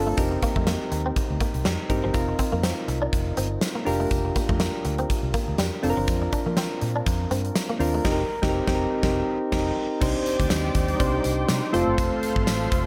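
A lightly swung 122 BPM groove in 4/4 drives this romantic, glossy 1980s-style pop passage in F mixolydian, built on a gated drum kit with a fat snare and punchy kick, a round, foam-muted fingered bass, soft chorused electric-piano-like synth keys, and a twangy, direct-recorded clean guitar riff with ensemble chorus and tape echo that stops at 8.0 seconds as the band accents, while a very quiet jingly tambourine sits underneath and a lush, warbling unison pad enters at 10.0 seconds, followed at 10.9 seconds by brief, mellow synth brass stabs, all in a light small-room ambience.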